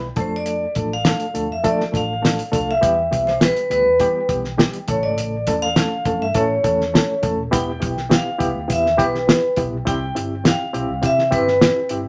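Urgent and passionate, this uptempo 1960s-style soul excerpt moves at 102 BPM in a straight 4/4, its chords passing from Dm through Em and A before a second section at 7.5 seconds turns to Em and C. A ringing, metallic vibraphone played with medium hard mallets and slow motor vibrato carries the melody up front, over a reedy, clean electric piano whose fast tremolo sounds through its built-in speakers, while a round, foam-muted electric bass sits dark and amped beneath them. The cloth-damped drum kit is dry and thuddy, with a fat snare, tight kick and rolled-off top, and the recording sits in a wet studio ambience.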